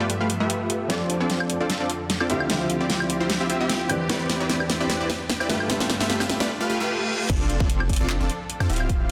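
Future bass with an emotional, dreamy mood and a half-time swing: a soft, felt-muted upright piano with audible action noise sits in the background beside a bowed string section with smooth vibrato, while an up-front, detuned supersaw stab plays a riff through a filter sweep, with sidechain pumping and dub echo on the keys and synth. A dubstep kit with a huge, soft-clipped snare, metallic hats, handclaps and woodblock drives a drum fill, and a very quiet riser and reverse cymbal build toward the drop at 7.3 seconds. There a deep, sine-toned 808-style bass and an overdriven, punchy electronic kick arrive with an impact, all set in a lush hall reverb within a dense, heavily limited mix.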